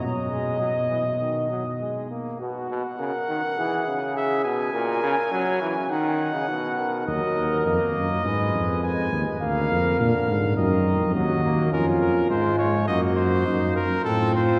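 Solemn and serious, this classical canzona for brass ensemble unfolds in steady, imitative writing, heard as a passage cut from a longer piece. A warm cornet carries the melody up front with a light vibrato, while a mellow flugelhorn shapes the second line just beneath it. A bright, vintage-toned trombone fills in the accompaniment in the middle register. The tuba anchors the bass with a smooth top and a gentle vibrato, sitting prominently in the blend before dropping out at 2.1 seconds and returning at 7.1 seconds. The whole ensemble is heard from further back in a cathedral, whose long, wet reverberation lends the harmonies a grave, ceremonial breadth.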